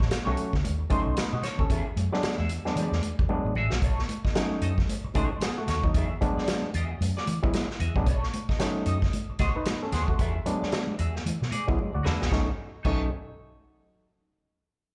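A punchy, up-front vintage drum kit and a round, foam-muted fingered bass open this strutting funk groove at 113 BPM in 4/4 alongside a clean, hollow-bodied semi-hollow electric guitar that is tucked lower in the mix, its picked accompaniment colored by wah, spring reverb and slapback echo. Almost at once, at 0.3 seconds, an overdriven auto-wah clav arrives up front with stringy, percussive stabs through a combo amp, while high-tuned, damped congas played with soft hands sit in the background, both carrying a slapback echo. The kit has a distant, small-room character with dark cymbals, a medium-tuned snare and a rolled-off top, and the bass sounds dark and amped. Built on a swung sixteenth-note feel in B mixolydian, the harmony alternates between B9 and E9, with drum fills marking the turns at 3.3 and 11.8 seconds. The whole piece comes across like a live club gig heard through the venue's PA, and this short cut is lifted from a longer performance.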